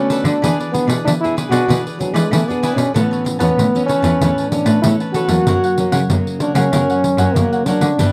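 A straight 4/4 samba-choro groove at 95 BPM, driven by jingly pandeiro played with soft hands, carries this lively, playful piece, where a warm, jazz-styled trombone with light vibrato and scooped notes sings the melody up front over a smooth, bowed cello bass, crisp picked cavaquinho and a full-bodied fingerpicked nylon-string guitar with audible finger squeak in the background, captured in a dry, close 1970s-style small-room studio sound as the chords move from E7 to Aadd9 to F#.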